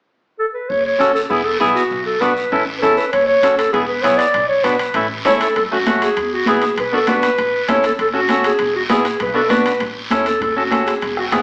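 A straight 4/4 cumbia pulse at 198 BPM drives this festive, sunny cut from a longer piece: a dark, roomy clarinet sings the melody up front over a woody, pizzicato upright bass, a raspy guiro and a bright, clean semi-hollow electric guitar picking the F#m–E–Bm–A cycle, while ringing metal-shell timbales join in the background at 3.1 s, damped, high-tuned congas at 5.6 s and a soft-beater bombo at 10.4 s, the whole mix heard from further back in a wet studio with an AM-radio tint.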